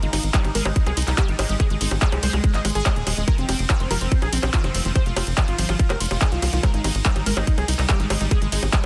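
Dense, heavily limited and nearly dry, this intense, alien psychedelic trance excerpt puts a tight electronic kick up front from 0.3 s over a dark, driving sawtooth sequencer bass laced with ring modulation, while an overdriven kit of bongos, handclaps, bright hi-hats and ride cymbal sits alongside, a lush, detuned unison pluck riff with digital delay and sidechain pumping rides in the background, and a thick, bold unison lead melody with vibrato sings on top through phaser, delay and sidechain pumping.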